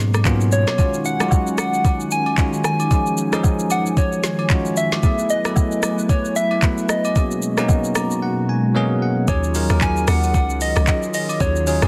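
Swung sixteenths in 4/4 drive this soulful, hypnotic amapiano passage, cut from a longer piece. An electronic R&B drum kit sits up front with a soft kick, a woody snare with soft clipping, metallic hats, rim click, shaker and handclaps, while agogo bells and woodblock stay close and dry in the background. A bell-like tine electric piano carries the accompaniment and plays a fill at 7.7 seconds, and a round, gently struck synth lead with chorus and tape echo sings the melody over a hollow, flute-like pad with ensemble chorus, moving through minor eleventh chords; a deep sub bass with a pitch-drop attack sounds only until 0.7 seconds, and the drop at 9.3 seconds brings in a bouncy, percussive log drum bass, all set in digital ambience within a dense, heavily limited modern master.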